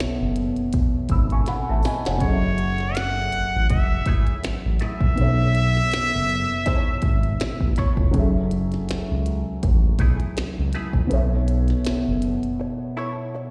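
Heard as a live gig through a venue PA with recital hall reverb, this smooth, introspective neo-soul R&B excerpt sets a dark, woody upright piano with slapback echo over a sawtooth synth bass and a minimal electronic kit of deep kick, tiny snare, clicky hats and finger snaps, while a nasal, straight-muted trumpet takes a brief solo from 2.2 seconds, a clean hollow-body jazz guitar with wah enters at 3.7 seconds, and a break arrives at 12.6 seconds.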